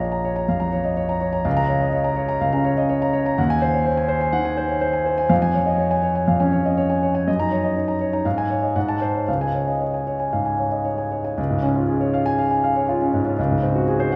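Played with free rubato in 4/4 at roughly 112-128 BPM, this stormy, passionate virtuoso piano study, taken from a longer piece, opens in Bb minor and turns toward Db major from 3.4 s, with a new section arriving at 11.4 s. A solo concert grand carries it from start to finish, spanning Bb1 to Bb5 with deep bass, a smooth, vintage and intimate tone, and audible action noise, placed up front. Around it, a wet recital-hall reverb with a 1.8-second decay gives the sense of a church or concert hall.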